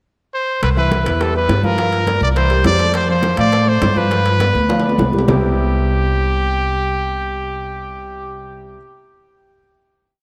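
A bright, up-front trumpet with a touch of delay carries a motif-based, pop-style melody through this joyful, danceable salsa piece at 205 BPM in C major, over a woody pizzicato upright bass playing a tumbao that anticipates the chords, a polished baby grand piano montuno in octaves, and very quiet percussion (ringing congas with slaps and open strokes, tight high-tuned bongos in steady eighths with hand bell, and background timbales on shell and bell) that closes with a drum fill and stops around 5.4 seconds, leaving trumpet, bass and piano to carry the final Cmaj7 chord in a dreamy mix soaked in lush hall reverb.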